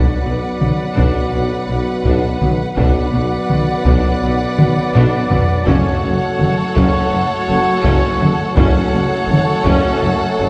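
A dark, dramatic cinematic orchestral cue at 83 BPM in a straight 4/4 opens with lush bowed violins carrying a melody on F#5 over a second violin line, both expressive and softly attacked with vibrato, while a very quiet, smooth viola section fills in beneath. A distant, roomy French horn section and a tight, very quiet trombone section hold sustained chords, and a mellow solo trumpet adds stabs. Double basses with a clear, focused tone, a background tuba and a rich, close cello section anchor the low end almost at once, and at 0.6 s a close, dry taiko ensemble played with hard sticks enters as the loudest part. The drums break into a fill at 4.6 s, and at 5.7 s the harmony moves from B minor to F-sharp minor as round, soft-mallet timpani sound F#2 in the background. A scoring-stage reverb sets the orchestra further back in the room, and the passage is cut from a longer piece.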